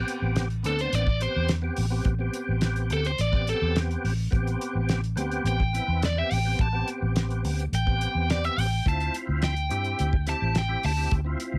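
A dry recording with little reverb frames this short cut from a longer straight-eighth soul blues in A minor, moving at 106 BPM in 4/4 with a mournful, soulful mood. A cloth-damped drum kit gives a thuddy, dark pulse from hi-hat, a fat snare and a tight kick, its top end rolled off. Beneath it, a vintage muted electric bass played with the fingers sits up front, round and punchy with a foam-muted, amped tone. A thick tonewheel organ holds the accompaniment, lightly overdriven with chorus vibrato, audible key click and a slow rotary speaker. From 0.7 seconds a biting, overdriven lead guitar carries the picked melody up front over a long Am7 that finally shifts to Dm7 at 8.9 seconds.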